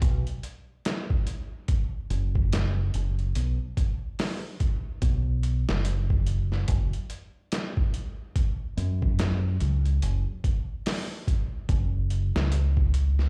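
A slow 72 BPM trip hop groove in 4/4 swings its 16ths as a compressed, pitched-down sampler-style kit of thumpy kick, medium-tuned snare and hi-hat sits up front, muffled and tape-toned, as if re-recorded in a small room. A deep dub fingered electric bass, dark and round, runs through the whole 13.3 seconds within a range of F#1 to F#2, played direct and amped. The mood is melancholic and brooding, and the fragment, cut from a longer piece, sounds as though played on a big sound system in a bare room with a large studio reverb.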